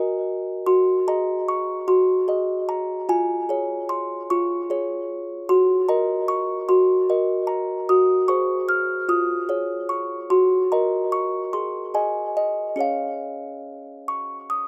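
A slow, straight 6/8 sway at 50 BPM in dotted quarters carries this innocent, dreamy classical lullaby in D-flat major, tuned to A4 = 441 Hz. A lone music box plays throughout, its delicate, tinkling plucked tones ranging from Db4 to F6, close-miked and dry so the small box sounds full and up front in an open-air setting with little reverb. The harmony moves gently among Db, Ebm and Ab7 chords before settling on Db at 12.8 seconds, a brief fragment of a longer piece.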